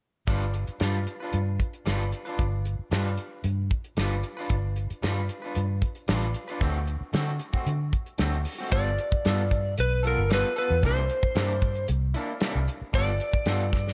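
Swaggering and soulful, this straight-eighth soul blues excerpt in G mixolydian moves at 114 BPM, with a tight, dry 70s drum kit and a round, punchy foam-muted fingered bass up front under twangy, slightly broken-up guitar stabs with spring reverb. At 8.7 seconds a dark, compressed slide guitar played with fingerpicks takes the melody as the chords shift from G7 and D7 to G9 and C9.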